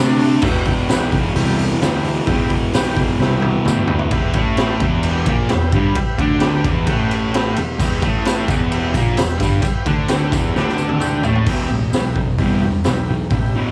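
This short cut from a longer garage rock track sounds raw and menacing, set in a small room with light reverb and the drums and fuzz guitar pushed up front. At 130 BPM in a straight 4/4 around E minor, a bright, double-tracked fuzz guitar drives a distorted riff while a dark, round fuzz bass, overdriven with tube saturation, punches underneath. The raw garage kit is gritty and saturated, with a boomy kick, a high-tuned snare and a rolled-off top, working across crash, ride, hi-hat and toms, and it plays fills at 3.2 and 10.6 seconds. A vintage combo organ holds buzzy, clean chords with heavy vibrato farther back in the mix and adds its own fill alongside the second drum fill. A jingly, close and dry tambourine comes in at 0.9 seconds, drops out, and returns from 7.8 seconds.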